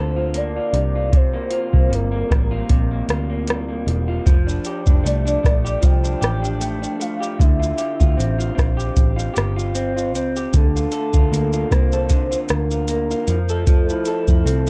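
A dry, gritty hardware sound frames this hazy, nostalgic stretch of indie bedroom pop, cut from a longer piece, where a soft octave-layered synth lead with tremolo, analog chorus and tape echo carries the melody over a slightly broken-up, compressed electric guitar through a small old amp, a dark, foam-muted picked electric bass with tube saturation, and an up-front vintage rhythm box of deep kick, metallic hi-hat, rim click and shaker that enters at 0.3 s with 12-bit sampler grit, the harmony drifting through suspended, sixth and seventh chords.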